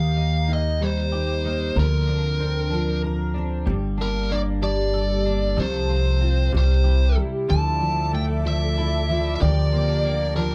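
A woody, thumpy pizzicato upright bass sits up front in this swaying, heartfelt six-eight pop ballad fragment, beneath a biting, overdriven lead guitar carrying the melody, a full-bodied, double-tracked steel-string acoustic guitar picking the accompaniment, and a bright, compressed twelve-string electric guitar tucked in the background with lush-chorused arpeggios, while a smooth string section with light vibrato enters on sustained chords at 7.5 seconds, all in a dry, close 1970s-style studio sound touched with light reverb.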